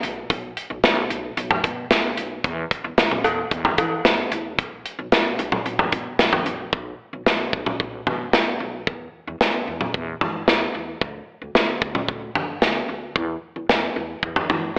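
An up-front, polished acoustic studio drum kit with a punchy kick, medium-tuned snare, hi-hat, toms and cowbell drives this cool, driving synth-pop excerpt in B minor at 112 BPM, over a woody, thumpy pizzicato upright bass playing low and dark beneath it, all set in a wet recital-hall reverb with a big arena feel and a telephone-like colour, and shifting into a new section at 6.7 seconds.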